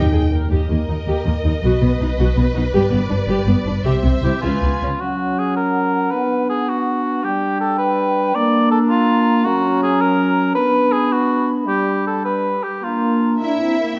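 Adventurous and heroic, this cinematic passage, cut from a longer piece, moves in 6/8 at 107 BPM counted in dotted quarters. It opens on a lush bowed string body: a distant, intense violin section carries the melody over a second violin line, while violas, cellos and an up-front, rich double bass section supply accompaniment and bass with vibrato. Just before the strings fall away, a solo cor anglais enters at 4.2 seconds. From 5.0 seconds, a mellow French horn section holds sustained chords beneath an airy, hollow flute in the background and a punchy clarinet. The harmony travels from the opening Eb through a Db7 into a repeating cycle of F#, Bm, G and A#. The violins and cellos return briefly at 13.4 seconds, all set in moderate recital hall reverb with a dark, warm production.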